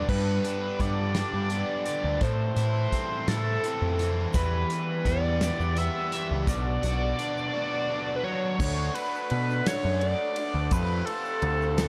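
Rolling in a slow 6/8 at 56 BPM in dotted quarters, this jangly, upbeat indie rock excerpt in D major sets a loose drum kit with a fat snare and tight kick under a growling, punchy overdriven bass and two picked guitar riffs, one biting with subtle chorus and digital delay, the other raw and lo-fi. Up front, a screaming, sawtooth-edged synth lead carries the melody with phaser, vibrato and digital delay over chords moving from G through Am, Em and Bm, while a grainy egg shaker joins in the background at 4.3 seconds. The biting guitar drops out at 8.6 seconds as the harmony shifts to D and then F, all set in studio reverb with a dark, warm production.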